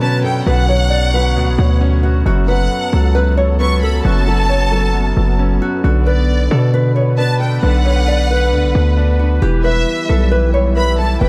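Hip hop in B minor at 134 BPM with a half-time feel, this short cut from a longer piece feels hard-hitting and eerie. A fingerpicked nylon-string guitar carries the melody between F#4 and D5, its small acoustic tone touched by digital delay, while a lush studio violin section bowed with vibrato and portamento traces an expressive second line above it, also through digital delay. A dark, mellow baby grand piano with long sustain fills out the accompaniment, and a detuned sawtooth pad with a slow attack, filter swell and chorus evolves quietly in the background. Up front, a punchy 808-style bass with a sine body, a noise layer and a fast, decaying attack dominates the low end from E1 to B2. All five parts play throughout the 11.3 seconds over a progression of Bmadd9, F#m, Bm and Em, in a dry mix with little reverb.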